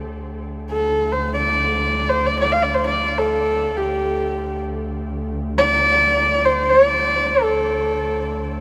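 Unmetered and free-flowing, this solemn, vast fragment of Mongolian folk music sets a husky, nasal horsehead fiddle up front, singing an airy-bowed melody with light vibrato and portamento from 0.7 s over a soft-attacked, expressive bowed double bass drone that sounds from the start, all bathed in a huge, wet ambient reverb that places the listener further back in the room.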